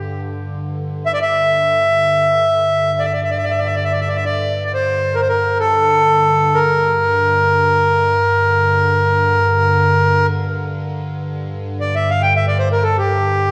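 Unfolding in free time, this meditative, spacious world piece in G dorian is cut from a longer work and rests on an evolving wavetable pad drone, morphing and bright with a slow attack, chorus and its own reverb, sustained low from the start. At 1.1 seconds a reedy, single-reed accordion enters up front with a clear, dry-tuned melody, sitting louder than the pad. The whole recording is bathed in a wet echo-chamber reverb and carries the worn, warbling pitch drift of old cassette tape.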